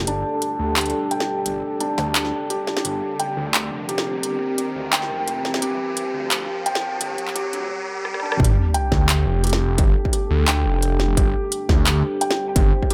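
A deep, moody pad and a felt-muted upright piano open this cinematic, heavy half-time drum and bass passage in G minor at 173 BPM, the pad holding sustained chords with chorus, built-in reverb and sidechain pumping while the soft, intimate piano plays arpeggios through a dub echo, its thick felt and audible action noise close at hand. Beneath them a swirling, detuned saw bass sits up front, thick and saturated with a phaser, and an industrial drum kit enters almost at once with a clanging snare, smooth hats, handclaps and rim clicks, swung lightly on the sixteenths. The harmony rests on Gmadd9 as a riser climbs from 0.5 seconds through the build-up, capped by a drum fill just before the drop. At 8.4 seconds the chord shifts to Gsus2, an impact hits and a distorted electronic kick arrives up front, while the riser and sub drop effects end by 9.8 seconds. Moderate spring reverb and a high-pass filter give the mix its echo-heavy character in this excerpt of a longer piece.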